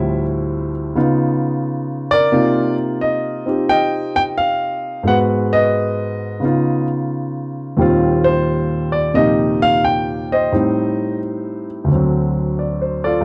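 A grand piano carries this solo jazz excerpt alone, heard up front and intimate, with audible action noise from the instrument itself. The mood is playful and warm, in 4/4 with a relaxed swing on the eighth notes. The harmony drifts through rich extended chords, opening on Dm11 and passing through Db9, Cm7, Abm7 and Eb69 before turning toward Am7b5 at 10.5 seconds and D7 at 11.9 seconds. The piano ranges from a low D2 up to G5 across the 13.2 seconds. The sound is dry and close, like a 1970s studio session, giving the instrument a natural, unvarnished presence.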